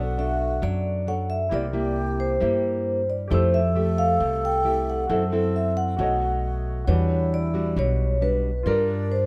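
This relaxed, sunny bossa nova excerpt opens with the whole band together: a close-miked, dry vibraphone carries the melody with a ringing, metallic tone and slow motor vibrato, while an airy wooden-headed alto flute with a soft attack traces an expressive second line beneath it. Up front, a woody, thumpy pizzicato upright bass holds down the low end, while a thumb-plucked classical nylon-string guitar and a clear grand piano sitting in the background share the accompaniment. Light reverb surrounds the ensemble as the chords move from Bm9 through Fmaj9 and B7 to Em9, reaching Gm7 at 8.7 seconds.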